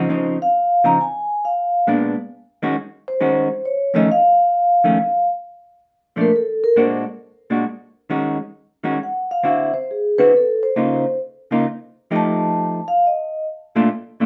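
The recording sits in a moderate studio room with a short reverb, placing a clean, hollow-bodied electric guitar and a ringing vibraphone close and up front. This is a relaxed, playful jazz waltz in three, swung on the eighth notes and cut from a longer piece. The vintage guitar, picked with a dark tone, carries the accompaniment throughout, moving through rich harmony such as Dbmaj9, Ebm11 and Faug7. Played with soft mallets, the vibraphone takes the melody in a mellow, metallic voice with a slow motor vibrato, and a plate reverb gives its notes a smooth sheen. From 5.4 seconds it stretches into a solo over the second section, pausing briefly before returning at 9.0 seconds, and the harmony settles back on Bbmaj7 near the close.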